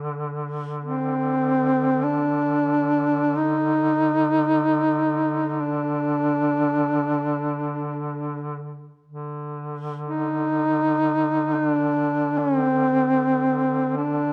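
A mellow duduk carries the melody up front in this solemn, longing Caucasian lament, entering at 0.8 seconds with folk-style vibrato. Beneath it, a second, warm duduk holds a drone from the very start, its soft attack, scooped notes and vibrato sounding distant and roomy. Close, detailed microphones and a moderate recital hall reverb frame this brief excerpt from a longer piece.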